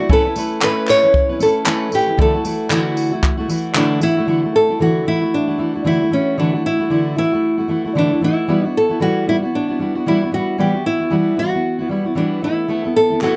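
A small, bright nylon-string guitar carries the melody up front in this heartfelt, easy-going acoustic pop piece, its fresh strings picked with fingers in D major at 114 BPM with a gentle swing on the sixteenths. Beneath it, a warm, full-bodied jumbo steel-string acoustic guitar, also fingerpicked and up front, supplies the accompaniment, moving through Aadd9, Dadd9, Emadd9 and Asus2. In the opening passage, a polished, airy jazz brush kit in a small room adds a boomy kick, tambourine and handclaps before dropping out at 4.2 seconds. A crisp group handclap sits distant in the background, heard through that opening stretch and again briefly at 13.2 seconds. The sound is dry and detailed, with the instruments miked closely, and the recording is cut from a longer piece.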